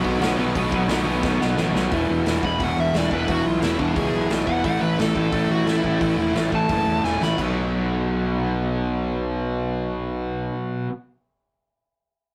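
Energetic and upbeat, this fragment of punk rock in B mixolydian charges along at 176 BPM in a straight 4/4, with a crunchy overdriven guitar in the background and a bright, compressed distorted guitar up front hammering riffs over a growly, fuzz-drenched picked bass. A raw garage drum kit with a boomy kick, gritty saturation and a pumping stone-room sound drives the music, with fills leading into a dark, smooth overdriven lead guitar solo from 1.9 to 7.4 seconds as the chords move from B to E to A and back to B. After the drums drop out at 7.5 seconds, the rhythm guitars and bass ring on in a rough rehearsal-room recording with tube saturation and light reverb.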